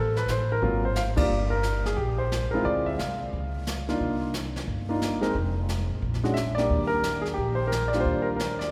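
Steeped in a wet church reverb, this swinging, sophisticated jazz piano trio excerpt at 178 BPM in Eb major sets a polished, up-front concert grand on the melody over a woody, growly pizzicato upright bass, with a brushed drum kit of dark cymbals and boomy kick joining at 0.2 s and the band hitting an accent at 1.1 s as the chords travel from Am through Ab13 and Cm11 to Ebmaj7.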